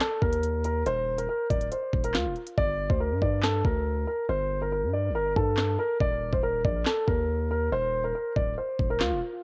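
A dark, mellow baby grand piano carries the melody between F4 and D5, its long sustain colored by cassette tape grit and analog delay, setting a tense, ominous tone for this drill cut taken from a longer hip hop piece at 140 BPM in a half-time 4/4 feel. Up front beside it, an electronic drum kit delivers a knocking kick, sharp snare, handclaps and crisp hi-hats, with the hats muted from 2.6 seconds onward, while a deep, sine-based 808-style bass with a fast attack and a long, decaying sustain enters at 0.2 seconds, ranging from D1 to G2. The whole has the feel of a home recording on cassette with light reverb, moving through harmony that shifts to G minor at 2.6 seconds.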